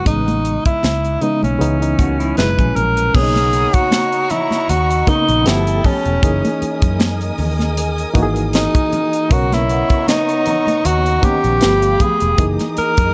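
Romantic and smooth, this lush 1970s-style soul passage, cut from a longer piece, sets a breathy, whispered tenor saxophone with tape echo up front over a barky, lightly overdriven electric piano with fast tremolo, a round, foam-muted fingered bass, a tight, polished funk drum kit with a high-tuned snare, and damped congas in the background, while a lo-fi electric guitar riff with spring reverb appears from 2.0 to 3.1 seconds before a bowed studio string section with portamento enters at 3.1 seconds alongside a ringing, metallic vibraphone, the ensemble heard in a small room.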